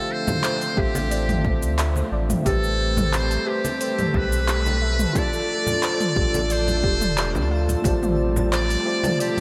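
A buzzy, metal-muted trumpet carries the jazz-style melody up front with light vibrato and slapback echo in this wistful sunset chillout excerpt at 89 BPM in A minor, over a tremolo tine electric piano, a lush detuned unison pad, a soft round pluck arpeggiating in the background, congas and an overdriven deep house kit entering at 0.3 seconds, a deep sine sub bass and punchy electronic kick arriving at 0.8 seconds, and a twinkling granular shimmer joining at 3.3 seconds, all moving through Dm11, Am9, F69 and G9sus4/A inside a big hall reverb.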